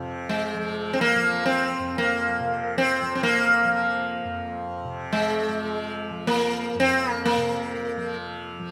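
Introspective and solemn, this short excerpt of Hindustani classical music unfolds in free time, a bright, softly plucked tanpura drone sounding from the opening moment to 8.7 seconds beneath everything. Up front, a round, plectrum-plucked sitar enters at 0.3 seconds, its buzzing tone and sympathetic strings ringing with a shimmer as it traces a melody in a narrow, low-middle range. A moderate concert hall reverb lends the performance a spacious, resonant air.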